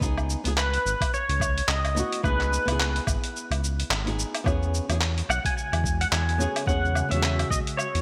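Sunset chillout at 108 BPM with a gentle 16th-note swing, relaxed and blissful in this excerpt. A fingerpicked acoustic flamenco guitar with audible finger squeak and delay sits beneath a deep, round analog bass, while a gritty, tape-warm sampler-style soul kit of handclaps, hi-hat, shaker and woodblock with gated reverb pairs with a thumpy compressed electronic kick. From 0.6 s a bright, clean pedal steel guitar carries the melody up front with slide, volume swells and analog chorus. At 5.3 s a mellow, ethereal pad drifts in behind, shortly after the harmony moves from C#m9 to E69 at 4.5 s, all set in a light reverb with a bright 1980s-style digital sheen.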